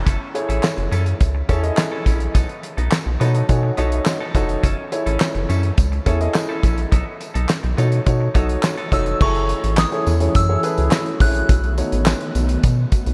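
A dreamy mix soaked in cathedral reverb wraps this slick, funky early-eighties boogie funk cut, taken from a longer piece, as a rubbery, hollow square-wave bass and a dry, damped seventies drum kit with a fat snare, tight kick, dark cymbals, hi-hat, crash and handclaps sit up front over a jingly tambourine in the background. A warm grand piano comps and adds a fill, while a bright, clean, picked electric guitar riff with subtle chorus runs until 9.1 seconds over alternating F#m7 and B7 chords. Shimmering vintage string-machine violins, heard briefly at the very start, swell back in at 9.2 seconds, and from 8.9 seconds a delicate, tinkling FM synth bell carries the high melody through chorus and a diffuse ambient delay.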